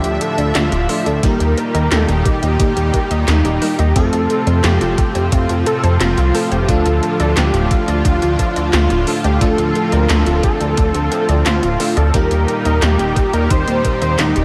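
A glossy, up-front chorused synth bass with sidechain pumping anchors this driving, cinematic synthwave passage in D minor at 88 BPM, cut from a longer piece and cycling through Dm, Eb and F. A thick, dark unison lead with vibrato carries the melody through cassette tape and tape echo, over airy soft supersaw chords with ensemble chorus and pumping, lush FM electric piano stabs with chorus and delay in the background, and a very quiet, warbling lo-fi pluck playing arpeggios. Tape-warm 80s pad drums bring a gated snare, metallic hats and handclaps, joined at 1.2 s by a thumpy sampler-style kick, all set in a dreamy mix soaked in plate reverb.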